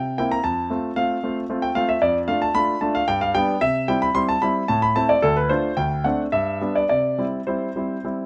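A clear, polished grand piano plays alone from the start in this playful, graceful classical-period sonatina in C major, moving in an uneven 3/4 at 112 BPM with rubato, ranging from D2 to C6 as its harmony passes from F through G and a Dm7 to D7 before settling on C at 6.9 seconds, the intimate, up-front sound revealing audible action noise within a moderate studio ambience in this short passage cut from a longer piece.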